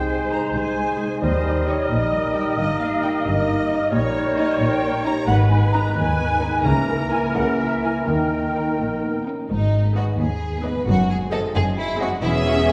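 In a 6/8 lilt, this sneaky, quirky cinematic fragment, cut from a longer piece, sets a lush violin melody over bowed cello and double bass sections, a clear viola section and a ringing concert harp playing arpeggios in the background. Airy flutes, a distant oboe, a mellow clarinet, a solo bassoon and a second violin section in the background weave second lines and accompaniment while a close-miked French horn section holds sustained chords. The woodwinds and horns fall away around 9.3 seconds, leaving the strings and harp to carry on in a roomy scoring-stage reverb heard from further back in the room.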